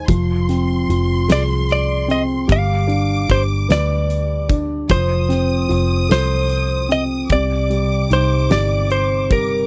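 A felt-muted upright piano opens this aching, melancholic pop ballad in six-eight. It has a soft, thick, intimate tone with its action noise audible, alongside a dark, round, foam-muted fingered electric bass that sits up front and a high, lush violin section with vibrato and a smooth top, set low in the mix. A huge acoustic arena kit joins at 0.1 seconds with a punchy kick, a fat snare and hi-hat, its big-room sound contrasting with the otherwise dry, close 1970s-style studio recording. At 1.3 seconds a clean, compressed electric guitar, picked and recorded direct, takes the melody up front in a mid-high register. The harmony moves from F minor to G, then F, and settles on C minor with an added ninth. The clip is cut from a longer piece.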